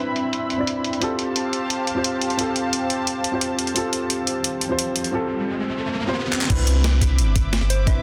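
Warm and lush, this short liquid drum and bass passage moves at 175 BPM in C major, cut from a longer piece. A dark, mellow grand piano with audible action noise sits up front through a digital delay, while a thick, detuned sawtooth unison pad holds sustained chords beneath it, colored by chorus, phaser and vintage 12-bit sampler grit. A gritty, compressed breakbeat kit of snare, hi-hat, handclaps and crash cymbal plays from the start with low-pass filtering on its hats, snare and cymbals, and an electronic riser builds from 4.3 seconds toward a drum fill. At the drop at 6.5 seconds, a round sine sub bass arrives with a thumpy electronic kick, giving the low end deep weight under a Cmaj9 chord. In the closing moments a gentle FM lead with chorus and vibrato adds a few bright, keys-like notes, all bathed in a moderate plate reverb and a dense, heavily limited modern master.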